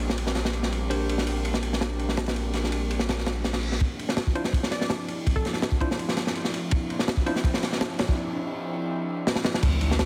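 Drum and bass with a jungle edge, this raw, dark cut from a longer piece runs at 165 BPM in D minor. A crunchy, saturated breakbeat kit sits up front over a thick, deep sub bass, while an airy, breathy chorused pad holds chords moving from Bb69 to Dm9. A bell-like tine electric piano stabs in the background through 12-bit sampler grit and dub echo until 7.3 s, and a glassy wavetable pluck flickers briefly from 4.7 s. Very quiet reverse cymbal, riser and impact effects feed a filter-swept build-up, a break and a drum fill before the impact lands at 9.6 s, all within a heavily compressed, radio-like mix with small-room ambience.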